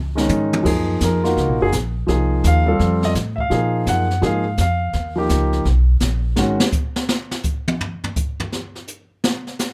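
Swinging and sophisticated, this up-tempo jazz piano trio excerpt in F# major at 168 BPM swings its eighths as a brief brushed drum fill opens onto an intimate, polished grand piano solo from 0.7 s with audible action noise and long sustain, over woody pizzicato upright bass and a brush kit with dark cymbals, a high-tuned snare and a boomy kick, before a drum solo takes over at 6.4 s and carries on alone after 6.6 s in a natural studio room with light reverb.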